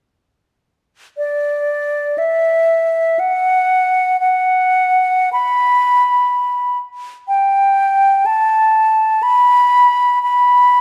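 Yearning and meditative, this brief classical passage for unaccompanied concert flute is cut from a longer piece. The flute enters at 1.2 s and plays alone until 10.8 s, moving freely and expressively in a rubato 3/4 across a register from D5 to B5. Its tone is airy and straight, with a crisp attack, and it sits up front in the mix. A moderate concert hall reverb surrounds the line, giving the solo a sense of space while the flute's sound stays close.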